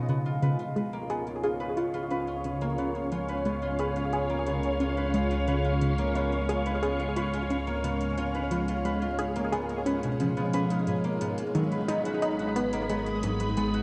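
Ambient, sequencer-driven space music at 89 BPM in a straight 4/4, this expansive, luminous passage from a longer piece rests on lush, vintage string machine chords with a slow attack and ensemble chorus, while a fingerpicked concert harp rings out arpeggios through delay and a fat, wave-folded analog bass holds the low end. A tight, detuned sawtooth sequenced synth drives a plucky riff through chorus, phaser and delay, and faint electronic hi-hat and congas with metallic hats fade in from 0.1 s under moderate plate reverb. The harmony sits on C#add9 before shifting to G#m at 10.9 s.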